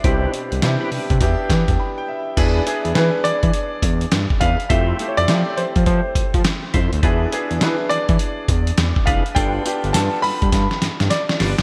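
A slick, confident new jack swing groove at 103 BPM opens with a gritty, compressed sampler-style drum kit up front, its thumpy kick, snare, hi-hat, tambourine and crash soaked in gated reverb, beside a smooth, detuned synth bass that glides between notes, while a short-sustain grand piano carries the melody through digital delay. A brilliant second grand piano comps underneath with subtle chorus, and a fat, key-clicking tonewheel organ adds percussive stabs through chorus vibrato, slow rotary speaker and delay, over a swung 16th feel and changes moving from Cmaj7 and Em7 into E7, Fmaj7 and G7. The bright 1980s-style digital production sits in a lush hall, with a piano fill and break between 1.5 and 2.4 seconds and a drum fill closing this excerpt from 10.5 seconds.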